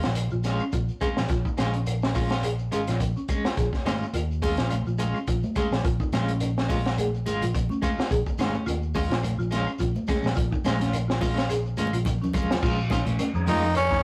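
A swung sixteenth-note groove at 106 BPM in 4/4 drives this intense, defiant afrobeat excerpt in Bb minor, anchored by a crunchy breakbeat kit with a punchy kick, high-tuned snare and dark cymbals sitting up front beside a round, amped fingered bass. Shekere and woody claves murmur far back in the mix, while bright, hard-handed congas join at 3.9 seconds. Over a Bbm7 chord, a ringing vibraphone with medium mallets and slow motor vibrato spins arpeggios, and an electric guitar at the edge of break-up adds picked stabs through tremolo. A drum fill leads into a new section at 12.6 seconds, where a lightly overdriven tonewheel organ with fast rotary speaker and chorus vibrato slips in beneath a growling, gritty tenor saxophone melody and a distant, roomy baritone saxophone line just before the cut. The whole take carries the rough feel of a rehearsal room, with saturation and a moderate studio reverb.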